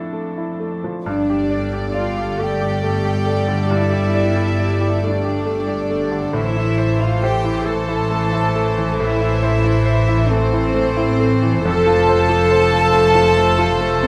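A dark, woody double bass section sits up front from 1.0 seconds, its bowed sul tasto lines carrying vibrato and a lush depth beneath this moving, bittersweet cinematic passage, cut from a longer piece. The tempo is a slow 46 BPM in a rubato 6/8, with the harmony moving from Dmadd9/F through Gsus2 and Am to F. From the opening, a bright, brilliant concert grand piano with a worn, natural character and deep bass plays accompaniment, joined by a rich viola section that sounds distant and floating in the background, and a cello section providing the bass with a pure, soft-attack sul tasto tone. At 1.1 seconds two violin sections enter: a symphonic section carries the melody in a floating, pure voice placed in the background, while an intimate chamber section with light vibrato plays a second line above it. The violins, violas and cellos are bowed sul tasto with soft attacks, giving the ensemble a hushed, tender glow. 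The recording uses close, detailed microphones with light reverb.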